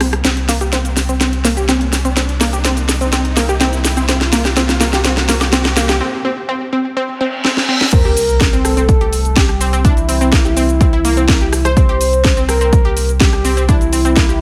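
Set in a straight four-four pulse, this hopeful, uplifting progressive house passage, cut from a longer piece, opens with a build-up in which an up-front house drum kit of cracking snare, bright hi-hats, cabasa, rim click and crash cymbal plays a fill, its overdriven hits sitting in a small room with sidechain pumping on the hats, percussion and cymbals. A lush, detuned sawtooth unison pluck spins arpeggios through a filter sweep and tape echo, pumping against a deep, thick saturated sub bass, while a riser, reverse cymbal and sub drop hover in the background. After a brief break at 6.0 seconds, the drop lands at 7.9 seconds with an impact over a C7 chord. A punchy, overdriven electronic kick enters there alongside a soft, round, octave-layered synth lead whose wave-folded tone carries chorus and vibrato. A moderate hall reverb casts a lush space over the whole mix.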